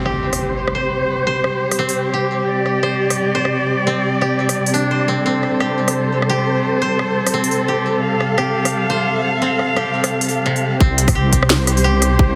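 A half-time drum and bass groove at 173 BPM, swung on the 16ths, drives this dark, heavy excerpt, with a tape-warm drum kit of cracking snare, crisp hats and rim clicks set in studio reverb. A lush, bowed cello section holds sustained chords that pump with sidechain compression, while a bright, woody koto played with fingerpicks spins dry arpeggios through a low-pass filter and digital delay, and an electronic impact opens the excerpt. At the drop at 10.8 seconds, a deep, wobbling sawtooth bass with chorus and a tight electronic kick push up front, the whole mix sitting in a huge ambient reverb with a heavily compressed, radio-like sound.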